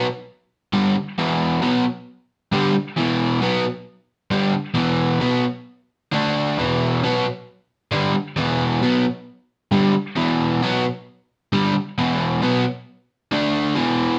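An up-front, double-tracked overdriven electric guitar takes the solo role through this driving, gritty rock excerpt at 134 BPM in straight 4/4, its dark, compressed, picked tone moving between E5 and D5 power chords across a range of E2 to D4, set in a wet studio reverb with the live feel of a band playing together in one room.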